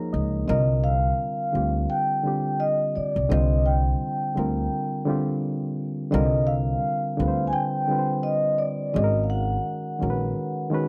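Late-night and introspective, this short neo-soul R&B passage from a longer piece opens with a brief fill on a reedy, lightly overdriven electric piano heard through its built-in speakers, joined almost at once by a woody, thumpy pizzicato upright bass, before a mellow, vintage-toned vibraphone with soft mallets and motor vibrato carries the melody over a lightly swung groove that drifts from Csus2 to Abm9 at 8.9 seconds, all set up front in a small room.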